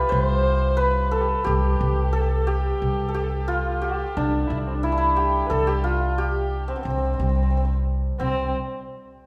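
A moderate recital-hall reverb surrounds this hypnotic, longing Persian modal ensemble piece in C dastgah mahur, cut from a longer work and moving at 89 BPM in a straight 4/4. Up front, a brilliant, shimmering hammered santur rings out the melody between C4 and C5, while a single dark kamancheh, bowed close and intimate with light vibrato, soft attacks and portamento, traces a second line. A woody, growly pizzicato upright bass holds C2, and the ensemble stops by 8.6 seconds, shortly after a new section begins at 8.2 seconds.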